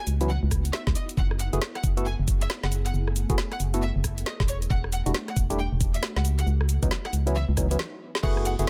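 A clear, smooth violin section opens this soulful, late-night two-step garage excerpt, its bowed ensemble melody touched with vibrato and tape echo, while an ethereal, airy pad sustains chords in the background through ensemble chorus, reverb, phaser and sidechain pumping. Almost at once an organ-like FM bass arrives up front, hollow and dark with a fast attack, joined by a garage drum kit of woody snare, metallic hats, rim click, cabasa and crash, and then a knocking electronic kick from 0.5 seconds, both re-recorded in a small room. A bright, barky tine electric piano plays stabs, lightly overdriven through a combo amp and colored by phaser and tape echo. At 136 BPM in 4/4 with a 62% swing on the sixteenths, the groove moves through C#m11, F#m11 and Em11 before returning to C#m11, in F# dorian. A drum fill and a stop arrive together at 7.8 seconds, all set in a digital ambience.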